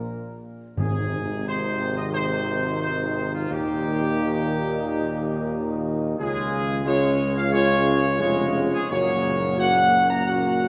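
Wet church reverb surrounds this regal, triumphant classical fanfare in Db major at 88 BPM, tuned to A = 438 Hz and cut from a longer piece, where a warm, up-front trumpet section carries the melody over sustained chords from a distant French horn section with light vibrato and a bright trombone section in the background, while a smooth-topped solo tuba plays the bass, hard-mallet timpani sound articulately from 0.8 to 1.8 s, and the harmony moves through Ab, Eb, Db and Gb.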